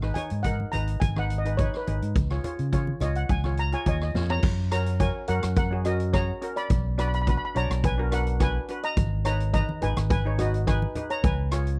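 A sunny, carefree calypso in F# major at 106 BPM opens with a mellow, soft-stick steel pan comping over a round, amped fingered electric bass, a boomy street-band drum kit and very quiet, low-tuned congas. A bright, shimmering steel pan carries the melody as an opening solo, and a drum fill at 4.1 seconds leads into a new passage where the congas drop out, returning at 9.7 seconds. The dry, close, 1970s-style studio sound keeps the bass and the rolled-off kit up front beneath the metallic pans.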